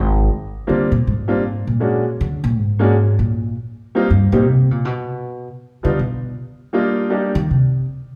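A pizzicato upright bass takes a woody, up-front solo from 0.3 seconds in this playful, relaxed jazz excerpt, swinging at 158 BPM in Bb major. Its steel-stringed sound is accompanied by a brilliant, open upright piano on the melody. The band plays live together in one room with a wet large studio reverb, moving through Bb69, a rootless Eb6, a chordless passage, and Cm11.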